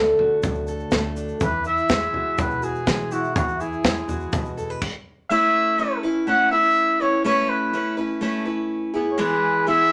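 A mellow, distant trumpet with light vibrato carries the melody through this uplifting indie folk excerpt at 123 BPM in A major, moving over D and Eadd9 chords. In the first half it is backed by a full-bodied fingerpicked dreadnought guitar, a woody pizzicato upright bass, a polished drum kit with punchy kick, medium-tuned snare, toms and crash, and a grainy shaker in the background, before a brief stop at 4.8 seconds. From 5.3 seconds a bright picked steel-string guitar takes over the accompaniment beneath the trumpet as the harmony shifts to Aadd9 and E, set in a moderate studio reverb.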